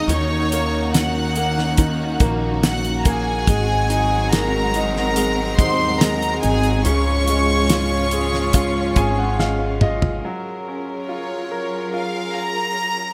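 A clear, floating violin section carries the melody of this hopeful, tender pop ballad at 71 BPM, bowed sul tasto with a pure tone over a brilliant grand piano and a lush string section holding sustained chords in the background. A woody pizzicato upright bass and a dry, damped 70s drum kit with a fat snare and gated reverb sit up front, joined at 3.5 seconds by a rich, smooth cello section with delay as a second line, while piano and drum fills lead to the bass, drums and cellos dropping out at 10.2 seconds. The chords move from Ebm7 through Ab7 and Db to Gbmaj7, framed by light reverb and a bright 1980s-style digital production.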